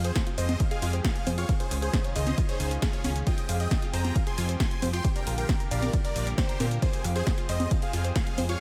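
A straight pulse from an up-front electronic kick, entering at 0.2 s, and a small-room analog drum machine with punchy snare, congas, hi-hat, ride cymbal and shaker drives this euphoric, emotional uplifting trance excerpt, where a huge, bright, detuned supersaw lead with phaser and tape echo carries the melody over a catchy square-wave unison second line with vibrato, an airy chorused pad, gritty 12-bit sampled arpeggio plucks and a funky, filter-plucked analog bass, all pumping to the sidechain through a light reverb.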